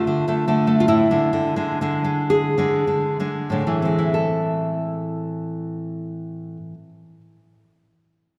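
A full-bodied, fingerpicked nylon-string guitar with fresh strings sits up front in this wistful, intimate fragment of a romantic solo classical piece in a rubato 6/8, slowing through its opening 4.1 seconds as it moves from Dm to E7/A before settling on Am, then falling silent at 7.2 seconds inside the lingering, wet church reverb.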